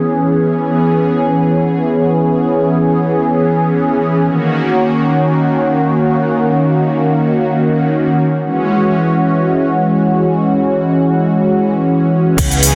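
Nu-disco in free time with a groovy, sensual mood, this excerpt lets an up-front, detuned sawtooth analog pad with chorus, cassette-tape color, sidechain pumping and dub echo hold slow-attack chords through C#m7, D#m7 and E69 before, at 12.4 seconds, a punchy envelope-filtered fingered electric bass, a layered electronic kick and an up-front house drum kit with crisp low-passed hats, crash cymbal and shaker arrive briefly alongside it, set in a wet digital room reverb and a dense, heavily limited modern master.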